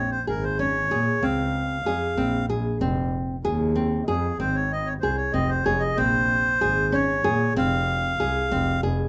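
Contemporary chamber music in an urgent, hypnotic 5/8 at 189 BPM in eighths, this brief F minor excerpt cut from a longer piece moves from Bbm9 to Fm7 and back before settling on Fm. A reedy, clear accordion carries the melody while a full-bodied, fingerpicked nylon-string guitar plays arpeggios beneath it. From 0.3 seconds a bowed double bass adds a smooth, vibrato-rich bass line, all within light reverb.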